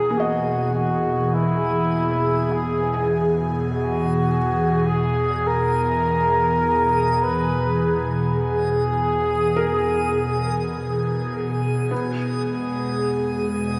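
Ambient music at a slow 51 BPM in 3/4, serene and luminous in E lydian, resting on a single Emaj7 chord in this short cut from a longer piece. An up-front mellow flugelhorn with light vibrato carries the melody until 11.3 seconds, its distant tone trailing into a diffuse ambient delay, over an airy, breathy pad whose detuned chords shimmer with chorus and phaser. Felt-muted upright piano arpeggios with audible action noise sit in the background alongside a round, dark analog bass and a reversed, granular swelling texture, both fading in, all bathed in a lush hall reverb.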